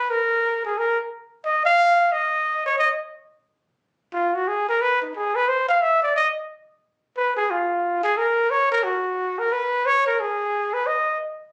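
A lone trumpet carries this short jazz fragment, with a warm tone and vibrato, close-miked and up front. Its swung line moves between Eb4 and F5 in 4/4, and the mood is playful. The trumpet plays alone from 0.0 to 11.2 seconds, and a second section opens at 6.8 seconds, where the solo continues. The instrument is tuned slightly below standard pitch, with A4 at 437 Hz. Captured on a phone in the room, the sound sits in a moderate club reverb that gives the horn a lively, intimate setting.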